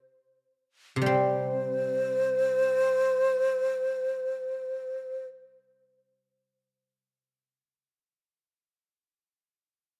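This short excerpt of Chinese traditional music for a chamber ensemble has a graceful, pastoral mood. The guzheng enters at 1.0 seconds, played with fingerpicks in its lower register, its ringing, silvery acoustic tone set up front as accompaniment. A moment later, at 1.1 seconds, the xiao takes up the melody, holding around a single pitch with a breathy, bright bamboo sound, vibrato and tongued notes. Its end-blown tone sits forward in the mix with lifted highs, and it falls away at 5.3 seconds while the guzheng rings on until 7.6 seconds. A light reverb gives the pair a soft sense of space.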